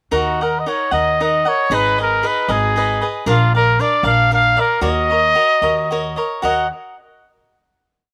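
This short, complete mariachi piece in the Mexican folk tradition is dramatic and passionate, set in E-flat minor in a rubato 6/8 at about 77 BPM, tuned slightly sharp to A4 = 441 Hz. A clear trumpet leads up front with a solo, classical-style melody built from call-like motifs and played with vibrato, its slapback echo adding a brief double to each phrase. Beside it, a cavaquinho strums sixteenths in open chord shapes, picked and bright with a crisp edge, also carrying a slapback echo. Underneath, a pizzicato upright bass on gut strings plays root and fifth on the main beats, its tone woody, dark and thumpy. The harmony moves from Ebm to Abm, then Bb, and settles on Ebm7 before a final chord rings from 6.4 seconds to the close at 8.0 seconds. Recorded outdoors with little reverb, the sound is dry and immediate, with the trumpet sitting clearly above the other two parts.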